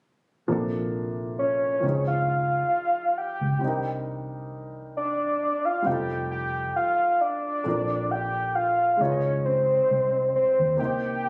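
Captured on a phone in the room with club reverb and compression, this fragment of a longer piece is a smooth, soulful neo-soul R&B groove at 67 BPM in Bb major, lightly swung on the sixteenths. From 0.5 seconds a dark baby grand piano with audible action noise and short sustain plays mellow, intimate chords such as Bbmaj9, Dbmaj9, Cm9 and F9, underpinned by a round, foam-muted vintage fingered electric bass. At 1.4 seconds an up-front, octave-layered synth lead enters, blending detuned sawtooth, triangle, sine and sub-octave layers with vibrato, chorus and slapback echo, and carries the melody into a second section at 7.7 seconds.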